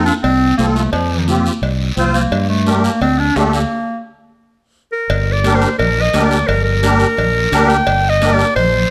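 A moderate large-studio reverb surrounds this driving, danceable cumbia fragment in G minor at 173 BPM, tuned to A4 = 435 Hz, where a bright, close-miked clarinet carries the melody up front in a classical style over a shimmering, reedy musette accordion and a warm, up-front fingered electric bass. A raspy guiro scrapes along, while high-tuned congas played with soft hands and metal-shell cowbell and timbales with a ringing tone sit in the background. The harmony moves from F to G minor at 2.3 s, and a stop from 3.7 s to 5.1 s leads into a new section that runs to the end of the cut.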